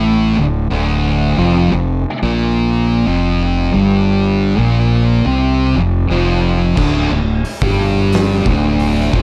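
A dark, warm production with light reverb and a small-room ambience frames this hypnotic, ominous stoner and doom metal excerpt in straight 4/4. A thick, double-tracked fuzz guitar sits up front, its picked riff moving from D5 to F5, joined from the start by a growly, overdriven fingered electric bass that is also up front. At 6.8 s, as the chords drop out, an oversized low-tuned acoustic drum kit arrives with a fat snare, punchy kick, crash and hi-hat, and a gritty, saturated, rolled-off top.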